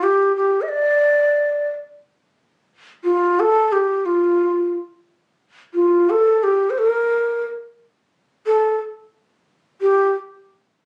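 Arabic music in free time, melancholic and soulful, carried by a solo ney that plays from 0.0 to 10.1 seconds within a range of F4 to Eb5+47c. The end-blown reed cane sits up front with a breathy, mellow, straight tone, tongued notes and rolled-off highs, and the music moves into a new section at 2.0 seconds. Captured on a phone in a room with light reverb, club reverb and compression, this is a short cut from a longer piece.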